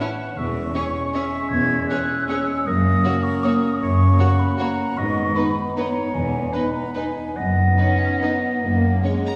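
In a rubato 3/4 that moves between 136 and 170 BPM, this elegant, sweeping classical excerpt, cut from a longer piece, is heard from further back in a concert hall with a long, wet reverb. A lush violin section carries the melody with focused vibrato, set in the background. Around it run three second lines: a clear, vintage-toned solo clarinet, a smooth, even studio violin section lower down, and an airy, hollow concert flute with a soft attack floating highest of all. A rich, intense viola section fills in the accompaniment, while a mellow, distant French horn section holds sustained chords in a roomy blend. At 0.4 s a close cello section and a double bass section enter together to anchor the bass, as the harmony moves from C#m/E through F#, G#m and Emaj7 to B/F# before settling back on F#.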